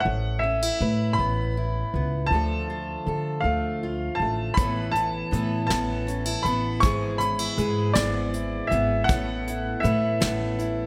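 A bright upright piano carries the melody up front, its brilliant, intimate tone showing audible action noise and long sustain, in this nostalgic, uplifting indie folk piece moving at a slow 53 BPM in 6/8, with chords moving from Asus2 through Dm and E/G#. A fingerpicked steel-string acoustic guitar and a woody, thumpy pizzicato upright bass support it from the start. At 4.6 seconds a full-bodied picked dreadnought guitar and a soft brush drum kit with a punchy kick join to build the arrangement, all under light reverb in this short cut from a longer piece.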